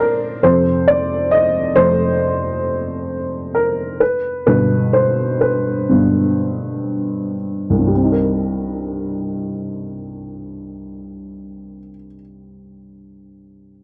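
Pop fragment in a slow, straight 4/4 at 59-69 BPM with an emotional, longing mood, carried by a dark upright piano with a woody, slightly detuned, boxy tone that sits up front, playing solo through the first 7.9 seconds as it slows from F to G before settling on Cm7 at 7.9 seconds, all captured in a dry, close 1970s-style studio sound.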